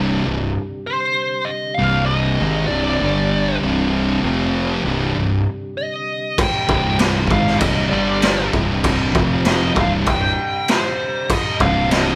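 Stoner and doom metal with an ominous, sludgy mood, heard in a short cut from a longer piece played live in one large studio room. Two thick fuzz guitars grind out a distorted riff in the background beside a growly, overdriven fingered bass, while a mellow tonewheel organ holds round, key-clicking chords through a slow rotary speaker. A dark, wah-treated lead guitar sits up front from 0.9 seconds, and a gritty, saturated garage drum kit with a boomy kick, medium-tuned snare and crash cymbal joins at 6.4 seconds.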